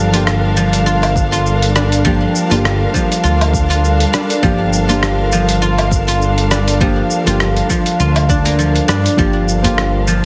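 The recording sounds heavily compressed and radio-like, set in a moderate echo-chamber reverb that gives this short cut from a longer piece an earthy, warm glow. It is organic downtempo in G minor at 101 BPM with a light sixteenth-note swing, resting on a single Gm7 chord. Up front, a guzheng played with fingerpicks rings out silvery arpeggios through a delay. Beneath it, a smooth sawtooth-and-triangle synth bass glides with portamento and vibrato, dark and prominent. A lush bowed string section holds sustained chords with sidechain pumping, while a deep, mellow chord stab sits in the background with chorus, delay, a filter sweep and its own pumping. A gritty, dusty sampler-style kit of cabasa, hi-hat, rim click and woodblock carries the groove, an overdriven electronic kick joins from 1.2 s to 9.3 s, and a small, dry udu taps briefly at 9.6 s.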